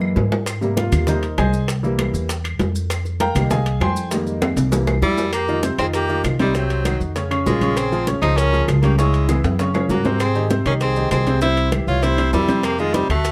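Set in a light reverb, this fiery, sophisticated Afro-Cuban jazz excerpt opens with a clear, short-sustained baby grand piano solo over a thumpy, woody pizzicato upright bass. Underneath sit thick-skinned congas, very quiet tight bongos, ringing metal-shelled timbales, distant claves and grainy maracas, with occasional drum fills punctuating the groove. At 5.0 seconds a punchy, forceful tenor saxophone takes the lead with vibrato and scooped notes, joined by a breathy, crisp-attacked concert flute on a second line.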